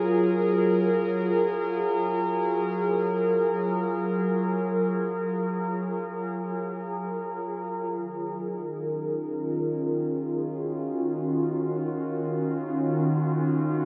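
Serene and reflective, this ambient excerpt drifts in free time in Eb minor, tuned to A4 = 436 Hz, carried by a single warbling, detuned pad that sits up front with a slow attack and long, mellow release. Its chorus, phaser and tape echo give it a nostalgic, lo-fi cassette character as it moves from a Gbmaj9 chord to Ebm9 at 7.9 seconds. A huge reverb places it in a vast, echoing space.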